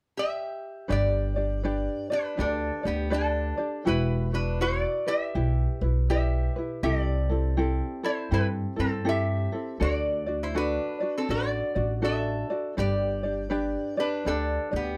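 A lap resonator guitar opens this relaxed, languid Hawaiian excerpt at 0.2 seconds with a metallic, nasal slide melody picked with fingerpicks, joined at 0.9 seconds by a light, thumb-plucked tenor ukulele and a woody pizzicato upright bass on steel strings, all up front and closely, dryly recorded as a lazy swing carries the chords from G through Emadd9, C6 and D back to G.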